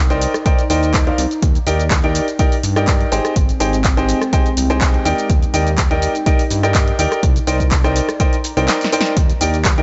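Lightly reverberant with a digital ambience and a soft top end, this feel-good, euphoric piano house excerpt at 124 BPM in Eb major rides a gentle 16th-note swing, with an intimate, up-front baby grand piano riff carrying audible action noise and tape echo, a fat, tube-saturated sawtooth bass, and a lo-fi, warbling pad with chorus sitting dark in the background, all three pumping to the sidechain, over punchy analog drum-machine handclaps, hi-hat, rim click, shaker and snare joined by an electronic kick at 0.5 seconds, with a drum fill at 8.7 seconds as the chords move through Cm9, Ebmaj7 and Abmaj7.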